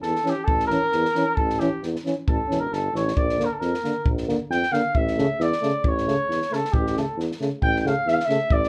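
Set in a small, moderately reverberant room, this short excerpt of Balkan brass band folk moves at 135 BPM in a lightly swung 2/4 in A phrygian dominant, with a bittersweet, restless mood and chords shifting from A to Bb and back. A punchy flugelhorn with vibrato carries the solo melody up front, though it sounds somewhat distant. Beneath it are a roomy tuba bass line with light vibrato and a dark, smooth cocktail drum kit with a high-tuned snare and punchy kick, while a mellow trombone and a soft-attacked euphonium add accompaniment from 0.2 to 8.4 seconds.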